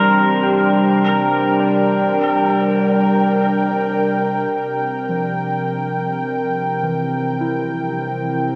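Peaceful and weightless, this short ambient excerpt drifts at 52 BPM in a straight 4/4, set in C mixolydian and moving from G minor to a C7sus4 chord at 4.5 seconds. A smooth, detuned sawtooth pad sits up front with chorus, holding sustained chords across the whole passage on its slow attack. Alongside it, a muted, dark synth keys part with a felt-like softness plays intimate arpeggios, its fast-attack, decaying notes carrying a faint noise layer and ring-modulated edge through chorus and diffuse ambient delay. An evolving analog drone of detuned sawtooth and pulse waves stays in the background, shaped by chorus and phaser with a long release. A clean, twangy electric pedal steel guitar, played with fingerpicks and slide, offers a brief compressed melody on Bb4 through diffuse ambient delay before falling away at 3.3 seconds. The whole mix is bathed in a huge, wet reverb whose long 8.2-second tail lets the sounds melt into one another.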